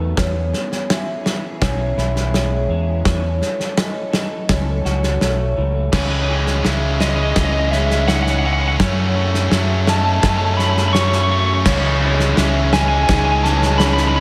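A big arena sound, bathed in a moderate concert hall reverb, frames this hopeful, cinematic post-rock excerpt in a straight 4/4 feel. From the start, a very quiet, lush bowed string section holds sustained chords, while a slightly broken-up, lo-fi guitar through a small old amp plays arpeggios in the background, colored by analog chorus, slapback echo and digital delay. A vintage, ringing vibraphone adds its own metallic arpeggios in the background with slapback echo and digital delay, above an up-front, round fingered bass and a loose indie kit with a punchy kick, medium-tuned snare, dark crash cymbals and a pumping room. The harmony moves from E6 to F#m/E, then a build-up begins at 5.9 seconds as the chords shift between C#madd9 and F#m, and a bright, overdriven distorted guitar riff enters. A clean, scooped guitar melody with digital delay arrives at 7.0 seconds, and at 11.7 seconds a very quiet, compressed second distorted guitar riff thickens the climb.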